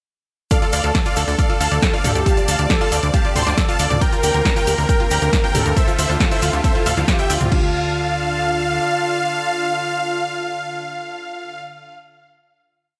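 Light reverb gives this short, complete uplifting trance piece a polished sheen, with a driving, emotional mood in a straight four-on-the-floor pulse. Up front, huge detuned supersaw chords carry a repeating riff melody over a pedal note in sixteenths, moving in thirds and sixths with sidechain pumping and digital delay. A velvety, full-bodied synth lead with chorus, vibrato and delay adds its own repeating riff. A very quiet, round analog pluck doubles the anthem part an octave higher, while a second pluck spins a 32-step arpeggiated sequence, all set against an airy, thick unison pad in the background. A heavy, layered electronic kick, a punchy analog drum machine with snare, hats, toms and crash, and a grainy egg shaker in sixteenths drive the drop, joined by a galloping, funky sawtooth bass that pumps against the kick. The drums fall away around 7.5 seconds, and the bass soon after, leaving the supersaws, lead, pad and high pluck to ring out a final chord until 11.6 seconds.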